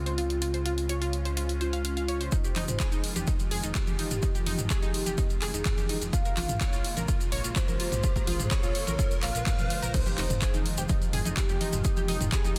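This progressive house excerpt opens on a filter sweep across a warm analog pluck arpeggio, set over a sustained Dbmaj7. A velvety, detuned synth lead carries the melody through chorus, tape echo and cassette tape coloring. An evolving wavetable pad sits in the background with ensemble chorus and built-in reverb, and a fat, sawtooth analog bass breathes with sidechain pumping. At 2.3 seconds the build-up begins: a punchy, up-front electronic kick enters alongside grainy maracas. Overdriven electronic congas and toms follow in the background, while the house kit's handclaps snap and its hats and crash pump beneath the Fm9 and Bbm7 chords at 126 BPM in F minor. A riser swells in from 5.3 seconds and an impact marks the drop at 9.9, opening onto a dreamy, expansive groove in a dense, heavily limited modern master.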